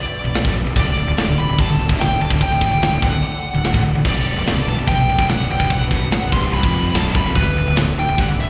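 A straight 4/4 pulse at 145 BPM drives this dark, heavy heavy metal passage in B phrygian, cut from a longer piece and moving between Bm and D5. A tight metal drum kit sits up front with a tight kick, medium-tuned snare, and bright china and crash cymbals, entering at 0.3 seconds as a stack of low riffing guitars takes shape: two high-gain distorted guitars, bright and picked, one very quiet and one in the background, arriving at 0.2 and 0.3 seconds, plus a double-tracked fuzz guitar with a warm edge joining at 0.3 seconds. Beneath them a growly fingered electric bass, overdriven and fuzzy, anchors the low end from 0.2 seconds. Over the top, a high-gain lead guitar carries the melody from the very start, its distorted tone thickened by slapback echo and digital delay. A muted string section adds veiled, con sordino sustained chords with light vibrato in the background, and the whole sounds like a live gig heard through a venue's PA with a touch of recital-hall reverb.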